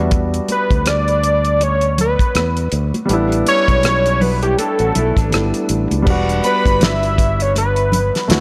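Lush and warm, this short slice of 1970s-style soul swings gently over Em7 and A9sus4 chords, with a growly, punchy fingered electric bass and a damped drum kit with a fat snare and tight kick sitting up front, while soft-handed congas and an intimate grand piano, its action noise audible, fill in beneath. A fat, detuned sawtooth analog lead carries the melody with vibrato and analog delay from 0.5 seconds. A dark, slightly broken-up electric guitar adds a lo-fi riff in the background from 4.2 seconds, and a woody, bowed string section briefly adds a second line at 6.4 seconds, all under a light reverb.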